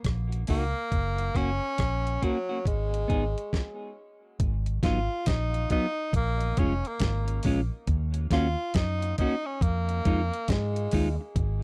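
A gritty, sampler-style drum kit with thumpy kick and fat snare opens this hypnotic, laid-back roots reggae piece at 69 BPM in Eb minor with a swung sixteenth feel, joined at once by a dark, foam-muted fingered electric bass, then at 0.5 s by a breathy, whispered tenor saxophone melody and a twangy clean electric guitar, both touched with tape echo, before a full stop from 3.5 to 4.4 s gives way to a new section moving through Abm7 and Bbm7, all in a dry, close 1970s-style studio sound.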